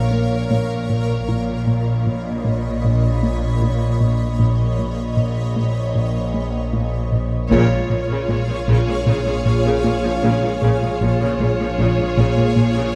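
A slow, straight 4/4 pulse at 77 BPM underpins this eerie, uneasy suspense cue, cut from a longer cinematic score and centred on Bb phrygian. From the opening, a punchy, detuned analog bass riff with a filter pluck sits in the background beneath bowed double basses and lush cello sections, while a chorused analog drone on Bb1 evolves with ring-modulated grit. Above them, a shimmering, ethereal pad with an octave-up granular glow sustains chords that move from Bbm to Badd9/Bb, lending an unsettled tension. At 7.5 seconds the mood shifts to Bbm7 with a band accent, as a close, expressive violin section takes a melody on Db5, a focused viola section adds bowed accompaniment, and a very quiet taiko ensemble strikes with heavy sticks until 9.0 seconds. The production is dark, placed on a moderate scoring stage with a 1.5-second reverb tail.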